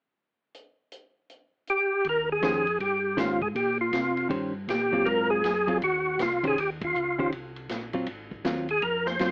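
Bluesy and swinging, this soul jazz organ trio cut moves at 159 BPM in 4/4 with a 64% swing on the eighths, sitting in Eb mixolydian. A vintage acoustic drum kit opens at 0.5 seconds with hi-hat, kick, snare and ride, its dark cymbals, punchy kick and rolled-off top set low in the mix. The percussive tonewheel organ takes the melody from 1.7 seconds, up front and lightly overdriven, with third-harmonic percussion, key click, chorus vibrato and a slow rotary speaker. A second, mellow tonewheel organ carries a round, clean bass line through a slow rotary speaker, joined soon after by a hollow-body electric jazz guitar comping with a compressed, picked tone that sits forward. The harmony moves from Eb13 through Ab6 and Eb7sus2 to Ab13, with a band accent landing at 6.8 seconds. Light reverb and a rough home-demo mix with an AM radio character give the whole a lo-fi, boxy feel.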